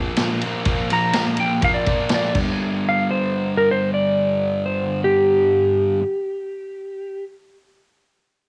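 A double-tracked fuzz guitar opens this swaggering, gritty garage rock excerpt in G minor at 124 BPM with a compressed, picked riff, joined briefly by a dark-cymbaled vintage drum kit with a punchy kick that stops at 2.5 seconds, while a clean lap steel guitar enters at 0.9 seconds with a slide melody, volume swells and analog delay over Bb and G5 chords, all carrying the character of a small-room home cassette recording.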